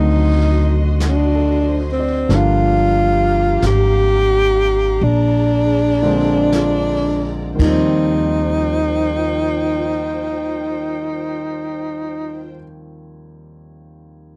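Swung eighths in a slow 4/4 at 35-49 BPM, easing back over the first 8.2 seconds, carry this tender, late-night jazz ballad in Eb major, where a breathy, subtoned tenor saxophone sings the melody up front over an intimate grand piano with audible action noise, a woody pizzicato upright bass, lush bowed strings in the distance and a dark-cymbaled brush kit heard from 1.0 to 7.9 seconds, captured in a dry, close 1970s-style studio sound before the piano finishes alone.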